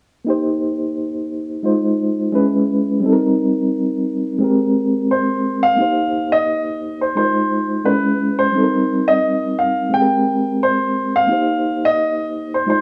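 A polished, present grand piano carries the melody from 5.1 s over a reedy, mellow electric piano that plays the accompaniment throughout with a fast tremolo through its built-in speakers, both up front in this silky, bittersweet soul excerpt at 87 BPM in C minor, lightly swung in 4/4 and cycling through Cm7, Fm7, Dbm7 and Abmaj9 inside a moderate echo chamber reverb with studio ambience.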